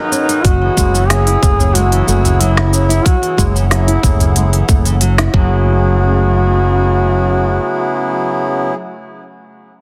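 A dense, heavily limited mix in light small-room reverb carries this warm, hypnotic organic downtempo excerpt in F# dorian at 92 BPM, where a mellow, vibrato-rich duduk sings the melody over a reedy, nasal harmonium and a soft, detuned breathy pad, both pumping with sidechain, while fingerpicked nylon-string guitar arpeggios with finger squeak sit in the background until 5.9 seconds, a round, punchy fretless bass anchors F#1 up front beneath a tight electronic kick, and a produced kit of woody snare, smooth hats and shaker blends with a deep, band-limited udu, with tape echo on the duduk, harmonium and guitar.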